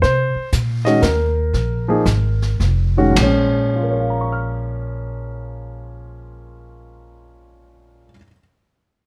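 Light reverb surrounds this swinging, late-night jazz piano trio fragment in Bb minor, set in 3/4 at 104-123 BPM and slowing over its first 3.2 seconds. A mellow, vintage grand piano carries the melody up front, its action noise audible, over a woody, thumpy pizzicato upright bass, while a brushed drum kit with dark cymbals and a boomy kick plays until 3.8 seconds. Chords move from Cm7 through Ebm11/F to Bbm7, and the bass continues to about 8.1 seconds, the piano to about 8.4.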